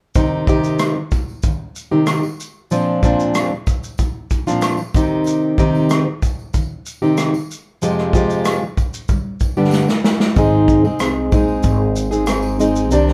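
Acoustic pop at 94 BPM with a wistful, tender mood, this excerpt opens with a bright, jingly tambourine set in the background, quickly joined by an up-front fingerpicked steel-string acoustic guitar with fresh strings and a warm tone over Cm, Bbadd9 and Fmadd9 chords, backed by a natural country drum kit with a punchy kick, rim click, shaker and snare. After a drum fill at 9.7 seconds, a woody, thumpy pizzicato upright bass and a very quiet, reedy electric piano with fast tremolo enter at 10.4 seconds on an Ab chord, all in a light reverb that sounds like a band playing live in one room.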